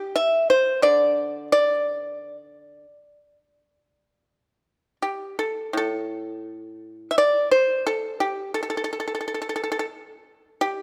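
Set in a moderate recital hall with a gentle sense of space, this short passage, cut from a longer piece, is traditional Chinese solo plucked-string music with a pastoral, flowing mood. A lone pipa, played with fingerpicks, sits up front with a dry, percussive attack and an acoustic warmth, moving freely in rubato across a span from low to high register. Around 5.8 seconds the music shifts into a new section that carries on until the end at 10.8 seconds.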